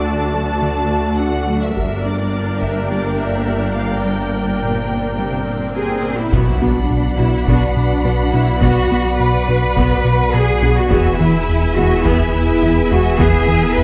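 A rubbery, wave-folded square bass arrives at 6.3 seconds with a saturated sub bass beneath it, driving this tense, vast hybrid orchestral and electronic film score cue at 105 BPM in 4/4, which is cut from a longer piece. Before that point, a close violin section carries the melody over a bowed cello section, a double bass section, a distant viola section with portamento, a chorused unison pad with tremolo and a very quiet nasal sequenced arpeggio synth, while heavy-stick taiko drums sit in the background. After an electronic swell and impact, the taiko return, an expressive second violin line with portamento and a mellow, very quiet French horn section join, and the chords move from D and G minor to B minor and E, all within a wet scoring-stage reverb.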